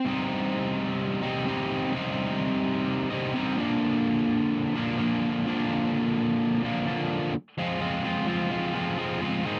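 A bright, double-tracked distorted electric guitar plays alone up front in this gritty, brooding rock excerpt at 128 BPM, its picked, compressed tone moving through Cm and Bb before shifting to Fm at 7.6 seconds, set in a dry, close 1970s-style studio sound with light reverb.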